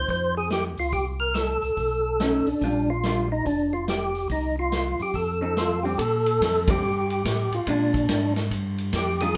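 A fat, up-front tonewheel organ carries the melody from the first moment, its percussive attack, key click and light overdrive turning through a slow rotary speaker with chorus vibrato. Beneath it, a hollow-body electric guitar adds dark, clean, picked accompaniment with a compressed edge, while a second, mellow tonewheel organ handles the bass line with a round, lightly driven tone and the same slow rotary sway. A swinging big-band drum kit, distant and roomy, joins on hi-hat, ride, snare and a boomy kick, its cymbals kept dusky. This bluesy, greasy soul jazz organ trio swings in four, and the chords shift at 6.0 seconds into a new section, where the whole band hits an accent at 6.6 seconds. The group sounds as if playing live together in one large studio, bathed in a wet reverb with a soft top end, and the passage is cut from a longer piece.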